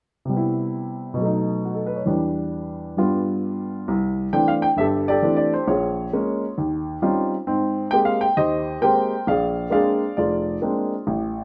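A woody upright piano opens at 0.3 seconds, playing solo jazz in a playful swing at 134 BPM in 4/4. It sits present and up front in a moderate studio reverb, moving from Cmaj7 through B7, Em7 and G7 before turning at 3.9 seconds to C69, Bbm7, Eb13, Abmaj9 and Bb9. This warm passage is cut from a longer piece and stops at 11.4 seconds.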